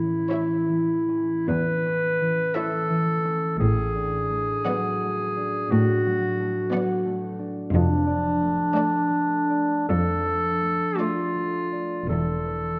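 A dark, reverberant concert-hall sound frames this tender excerpt of a slow romantic orchestral movement, drifting with rubato at 48-60 BPM in 4/4, where a distant, roomy clarinet on a second line and a ringing, thumb-plucked harp playing arpeggios sit up front over a rich, even cello section and a smooth double bass section holding the bass, while from 0.3 s to 11.8 s a focused violin section carries the melody in the background alongside a second, expressive violin line and a viola section adding portamento to its accompaniment.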